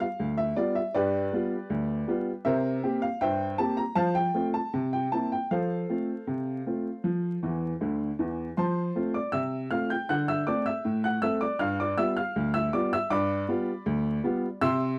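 A dry, close studio sound in a 1970s style, with vinyl crackle and a moderate room ambience, frames this short cut from a longer ragtime piano piece. A single upright piano plays alone throughout, its tone clear, woody and boxy, placed up front in the mix. The mood is jaunty and cheerful, set in F major at 79 BPM in a straight 2/4, with the instrument reaching from D2 up to G6. The harmony moves through dominant-seventh chords, G7 to C7 and on to F, later stepping to D7 and back to G7. The same strain is heard twice, and a short piano fill from 7.4 to 8.6 seconds leads into the repeat that carries on to 15.0 seconds.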